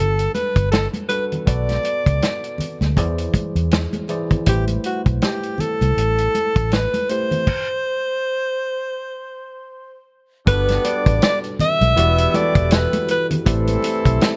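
A swung 16th-note feel at 80 BPM in 4/4 carries this warm, romantic slice of lush 1970s-style soul in G major, where a clear, up-front alto saxophone with vibrato and a soft attack sings over a worn, slightly out-of-tune tine electric piano with phaser, a round, foam-muted electric bass, a dry soul drum kit with dark cymbals and a tight kick, and thick-skinned congas in the background, before the band breaks for a stop from 7.5 to 10.5 seconds and a smooth-topped horn section enters with slapback-echoed stabs at 10.5 seconds, all in a dark, small-room production.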